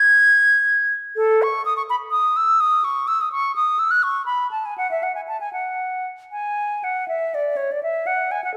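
A concert flute plays alone in a radiant, serene baroque-style fantasia in 6/8 with free rubato, its pure, straight, tongued tone sitting up front and ringing into a wet recital hall reverb, with the music shifting to a new section at 7.1 seconds before this short cut from a longer piece ends at 8.6 seconds.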